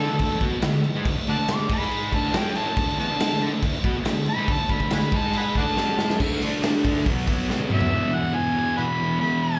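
An overdriven, gritty harmonica leads this swaggering, raw garage rock cut, taking a solo for the first 6.2 seconds with tongue slaps, scooped notes and a light vibrato, its amplified tone carrying a slapback echo. Beneath it, a thick, double-tracked fuzz guitar plays a picked riff up front, distorted and also touched by slapback echo, moving through D5 and G#5 chords before shifting to B5 and landing on E. The raw acoustic drum kit comes in at 0.2 seconds with a punchy kick, a medium-tuned snare, hi-hat, crash and toms. It has a dark, smooth character with a rolled-off top in a bright stone room, and it adds two short fills before dropping out at 7.9 seconds. The tempo is a straight 140 BPM in 4/4. The whole thing sounds like a live gig heard through the venue's PA, with light club reverb, and it is cut from a longer piece.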